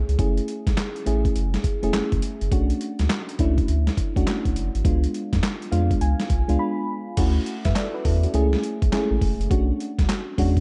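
A dark, lightly reverberant production frames this short excerpt of new jack swing R&B in F# minor, moving at 103 BPM in 4/4 with a 16th-note swing that gives it a punchy, bouncy feel. A dusty, sampler-style drum kit sits up front, its gritty, overdriven sound built from a thumpy kick, a medium-tuned snare, hi-hat, handclaps and crash cymbal. Underneath, the analog bass holds the low end with a deep, nasal tone and sustained notes. A mellow FM electric piano with chorus carries the chords, its soft, warbling vintage tone moving from F#m9 through Bm7 to a tense C#7b9. The electric piano plays a fill from 5.4 seconds, a brief break arrives at 6.6 seconds while that fill is still running, and at 7.2 seconds the harmony opens onto Dmaj9 before moving through F#m7 and Bm7.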